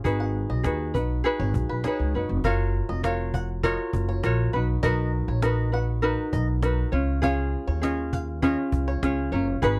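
A woody, growly upright bass sits up front in this sunny, heartfelt acoustic pop excerpt, plucked pizzicato on steel strings and holding down the low end from 0.1 seconds. A bright, light ukulele, fingerpicked and also placed up front, carries the accompaniment. A snappy cajon with snares, struck with hard hands and miked close, keeps a straight 4/4 pulse at 100 BPM. A twangy, percussive bluegrass banjo, played with fingerpicks, threads arpeggios through the mix from 0.2 seconds at a lower level. In F# major and tuned slightly low to A4 = 435 Hz, the harmony opens on G#m7 before moving at 2.4 seconds through F#maj7, Bmaj7 and C#. The sound is dry and close, like a 1970s studio recording with little reverb.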